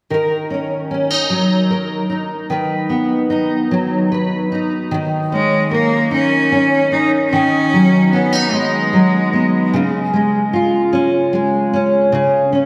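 This is a slow pop excerpt in Eb minor and 6/8 at 50 beats per minute, with an aching, dramatic mood. A double-tracked, fingerpicked steel-string acoustic guitar carries the accompaniment from 0.1 to 12.7 seconds, its dark, full-bodied dreadnought tone sitting up front. At 5.3 seconds a single bowed cello enters with the melody, biting and intense with vibrato and a touch of delay, and it stops at 9.4 seconds. The harmony moves from Ebm7 and B/D# through Eb5 to Db before falling away to a bare close. The whole mix is soaked in a lush hall reverb with a long 2.8-second tail, giving it a dreamy glow.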